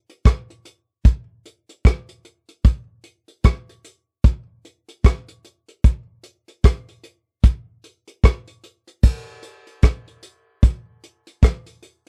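A soft brush drum kit, up front in a dry, close 1970s-style studio sound, plays a smooth, tender reggae groove at 75 BPM in 4/4 with a 16th-note swing, its tight kick, hi-hat, rim clicks and dark crash cymbals heard in a small, natural room, shifting into a new section at 9.0 seconds in this fragment of a longer piece.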